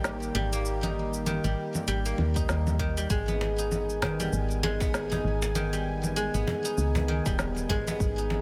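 Lightly reverberant, this meditative, earthy stretch of swung organic downtempo sets a silvery, ringing guzheng's fingerpicked arpeggios with delay and a round, dark FM bass up front, over a smooth, detuned sawtooth pad with chorus, with pad and bass both pumping to the sidechain, while tape-tinged electronic snare, shaker and congas play throughout, an overdriven deep electronic kick joins at 2.4 s, and a saturated cajon with faint snares enters at 3.4 s.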